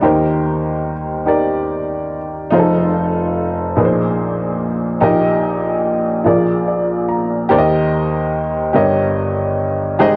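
Gospel in 6/8, this short passage, cut from a longer piece, feels jubilant yet reverent. A lone upright piano carries everything, its woody, slightly detuned tone sitting up front with a smooth, vintage character across a span from deep bass to bright upper notes. The harmony moves through Cm7/Eb, F7 and a Bb9sus4 before settling on Eb/Bb, and a piano fill at 6.3 s over Bb7 leads into a new section at 7.5 s that opens on Eb6 and turns toward Eb7/G. The sound is bathed in a recital-hall reverb and coloured by worn cassette tape, whose warbling pitch drift gives the playing an aged, wavering quality.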